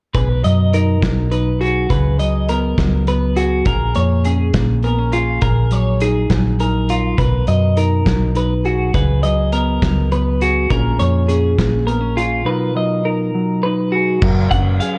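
Cassette-tape softness and light reverb frame this wistful, intricate math rock and midwest emo excerpt in 6/8, moving at 68 BPM in B lydian through chords such as Bmaj7, C#7sus4, A#m7 and a closing F#maj7. A bright, twangy twelve-string electric guitar plays up-front picked arpeggios through spring reverb, while a mellow, fingered electric guitar supplies dark, clean accompaniment and a round, punchy hollow-body short-scale bass sits prominently underneath. A loose indie drum kit in a small, pumping room, with dusky cymbals, a medium-tuned snare and a tight kick, carries a gritty vintage 12-bit sampler texture, and all parts play together from 0.1 s until the fragment cuts off around 15.0 s.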